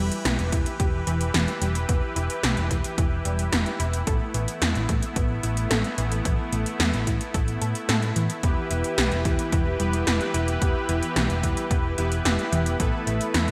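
Nostalgic and nocturnal, this 110 BPM synthwave fragment in E minor pairs soft supersaw chords with vintage sampler grit and a delayed unison pluck arpeggio set in the background over a dark, round hollow-body picked bass, overdriven 80s pad drums with a gated snare and metallic hats up front, and a punchy overdriven electronic kick, joined at 8.4 s by fat, nasal analog synth brass stabs with chorus and delay, all within a lush hall and bright 1980s-style digital production moving between Em and Asus2.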